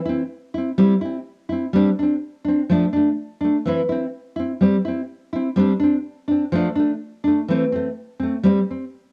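Warm and joyful, this short highlife excerpt moves at 125 BPM in a straight 4/4, rooted in C major. A lone nylon-string guitar carries it from 0.1 to 8.8 seconds, fingerpicked and sitting up front, its full-bodied, deep classical tone staying between E3 and E4. The part has a cassette tape character, and the whole sounds like a home recording made on cassette, with light reverb and the ambience of a small room. The harmony cycles through C, Gsus4, Dm and C/E before returning to C, Gsus4 and Dm, then turns to Am and settles on a bare C5 at 8.4 seconds. Cut from a longer piece, it offers a glimpse of the guitar's warm, joyful highlife spirit.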